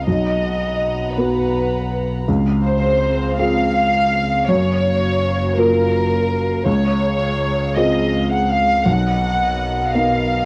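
A felt-muted upright piano sits up front in this short, intimate neoclassical excerpt, its mellow, softened tone carrying audible action noise and a vintage character as it plays the accompaniment. Over it, a chamber violin section carries the melody with light vibrato, a soft attack and a smooth top, bowed sul tasto and heard through a cassette tape coloring. A quieter string section holds sustained chords in the background, while a single rich double bass, bowed with an airy tone, supplies the bass line. In 6/8 at a rubato 55 BPM in D-flat major, the harmony moves through Cbmaj7, Dbmaj7, Gbmaj7 and back, giving the passage a hopeful, gently suspended mood. A moderate studio reverb and the home cassette recording lend the whole a close, homespun feel across its 10.5 seconds.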